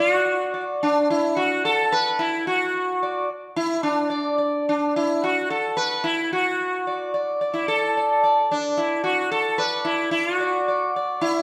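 A buzzing, shimmering sitar sits up front in a moderate recital-hall reverb, its sympathetic strings ringing around each plucked note in this short Indian classical excerpt cut from a longer performance. Playing alone in raga bhupali over a seven-beat cycle, the sitar moves between D4 and D5 with a meditative, radiant calm. The pace gradually quickens, and a new section arrives at 10.1 seconds before the clip ends at 11.4 seconds.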